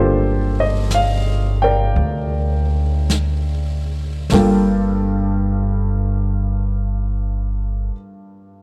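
An up-front grand piano with a smooth, vintage tone and short sustain carries this intimate, smoky slow jazz fragment in G minor, opening on a Gm9 chord and accompanying across G2 to G5 for the full 8.6 seconds. Beside it, a pizzicato upright bass sits close and woody on steel strings, moving between G1 and D2 until 7.9 seconds. A brushed drum kit enters at 0.9 seconds, its airy, polished small-room sound of snare, hi-hat and a boomy kick mixed well behind the other two parts before dropping out. The swung 4/4 pulse hovers between 47 and 62 BPM, slowing down over the first half. The production is dark and dry, with little reverb, and the clip is cut from a longer piece.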